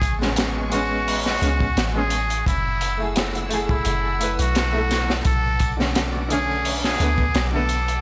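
A nasal, straight-muted trumpet with dub echo carries the melody over a gritty, saturated breakbeat kit, a round, deep 808-style bass with tube saturation, a woody, slightly detuned upright piano with tremolo, tape echo and 12-bit sampler grit, a lush violin section in the background and a distant tambourine, giving this brooding trip hop excerpt a blown-out, overdriven sound flecked with vinyl crackle.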